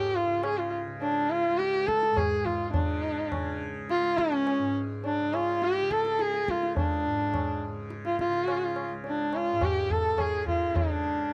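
A bowed sarangi, up front with light vibrato and gliding portamento, sings a smooth, even line over a softly plucked, buzzing tanpura drone that shimmers low in the mix, and from 0.4 seconds a high-tuned, ringing tabla, compressed and saturated, joins in this meditative, radiant Hindustani classical excerpt in seven, captured in a dry, close 1970s-style studio with light reverb.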